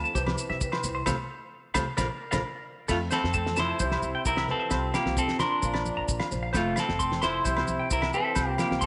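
Highlife guitar band music in F major at 132 BPM, carefree and warm, opens with a bright fingerpicked flamenco guitar, a compressed semi-hollow electric guitar playing arpeggios through spring reverb and tape echo, a woody, thumpy pizzicato upright bass, grainy maracas, ringing agogo bells, soft-handed congas in the background, and a damped 70s drum kit with a fat snare, tight kick and dark cymbals, the band hitting accents from 1.1 to 2.9 seconds. At 2.9 seconds a clean, picked electric guitar takes the melody up front while a mellow trumpet with light vibrato and scooped notes adds a jazz-style second line in the background. The whole excerpt sits in a moderate echo chamber with a softened top end, cut from a longer piece.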